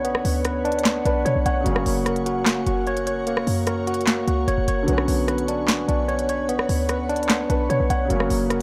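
A dark, dry production frames this brooding, menacing trap clip cut from a longer hip hop piece, moving at 149 BPM in 4/4 with a half-time feel in B harmonic minor. Up front, a worn, slightly out-of-tune tine electric piano plays arpeggios through a low-pass filter and digital delay, its clean tone sounding as if heard through built-in speakers. Beneath it, a mellow, vintage grand piano supplies smooth, filtered accompaniment, while an ethereal, airy pad of detuned sawtooth and triangle voices holds slow-attack chords in the background, colored by ensemble chorus, phaser and its own reverb. A short, punchy 808-style bass with a sine body, a noise layer and a fast, decaying attack sits tight and forward alongside an electronic trap kit of sharp snare, crisp hi-hats, handclaps and rim clicks. The harmony alternates between Bmadd9 and F# across the full 8.6 seconds, with every part playing throughout.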